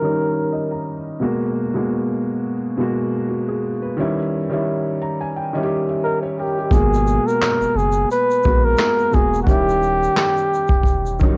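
A breathy flugelhorn with light vibrato and scooped jazz-style notes drifts through this reflective, hazy lo-fi hip hop excerpt, returning at 6.0 seconds over a muted, intimate felt upright piano with audible action noise, the two softened by low-pass filtering and cassette tape coloring, before a vintage brush drum kit with a punchy kick, handclaps and shaker and a deep, round dub sub bass join at 6.7 seconds in a small, homespun room.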